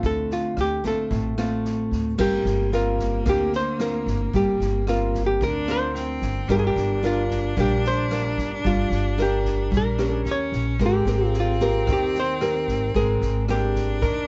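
A dark, clean hollow-body jazz guitar sits up front and carries the melody in this wistful, melancholic bossa nova excerpt, moving at 112 BPM in a straight 4/4 with a G phrygian colour. Beneath it, a fingerpicked nylon-string guitar supplies classical accompaniment with audible finger squeak, while a woody, thumpy upright bass played pizzicato on gut strings anchors the low end close to the listener. A distant, roomy drum kit with a medium-tuned snare, boomy kick, rim clicks and crash cymbal keeps time from further back, its top rolled off. At 2.2 seconds a clear, focused bowed cello enters as a second line, a single player with vibrato heard close. The harmony moves from Dm7 to a long stretch of Gm7, then turns through Eb7 to Abmaj9 near the end, all wrapped in light reverb with a softened, dark overall sound.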